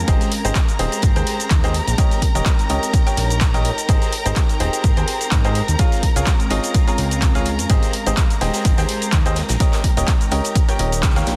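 Bright, brilliant baby grand piano carries a worn, grainy riff with vintage sampler grit and delay, pumping with the sidechain in this joyful, uplifting piano house cut from a longer piece, moving at 126 BPM in 4/4 with a light swing on the sixteenths in Ab major. Beneath it, a fat, thick analog bass with a detuned sawtooth edge breathes with sidechain pumping, while a punchy, dry electronic kick sits up front from 0.1 seconds. A rich, lush studio violin section holds sustained, expressive bowed chords with vibrato, and an ethereal, airy pad drifts in the background with chorus, phaser and its own reverb. The overdriven house kit layers cabasa, handclaps and hi-hat with a large-room character, and a very quiet acoustic studio kit adds hi-hat and a medium-tuned snare. The chords cycle through Abmaj7, Eb7 and Db before a band accent lands at 11.0 seconds, all in a dense, heavily limited modern mix with light small-room reverb.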